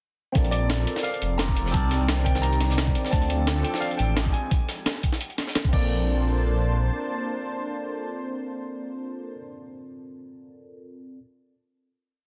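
A rolling two-step beat at 173 BPM drives this short, lush and uplifting liquid drum and bass piece in Bb major. An up-front, knocking electronic kick sits under a gritty breakbeat kit with a high-tuned snare, closed hats and crash, while a pitched-up jungle break loop with edits hums in the background, its hats, snare and room thinned by high-pass filtering. The drums drop away at about 5.8 seconds, while the deep, rumbling detuned saw bass, with its long gliding notes and tube saturation, carries on until about 6.9 seconds. Above them, an overdriven tine electric piano plays held chords with syncopated pushes through a combo amp, with phaser and delay, through a progression from Bbmaj9 through Cm9, Dm7 and Fm9 back to Bbmaj9. A thick, warbling unison pad breathes with sidechain pumping, and a polished baby grand piano states call-like motifs through tape echo. After the drop, a final hit from 5.9 to 8.7 seconds leaves the keys and pad ringing in light digital ambience, with the electric piano lasting until 11.2 seconds, all held in a dense, heavily limited modern master.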